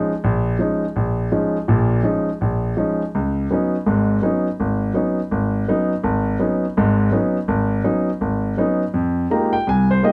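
A solo grand piano, intimate and up front with audible action noise and long sustain, carries this brief jazz fragment at a swung 166 BPM in 4/4, spanning Ab1 to Bb5. The mood is cool yet intense, moving from Eb9sus4 to Db9sus4 at 3.1 seconds before shifting to Fm11 at 8.9 seconds. Light reverb and a dark, warm production wrap the natural piano sound.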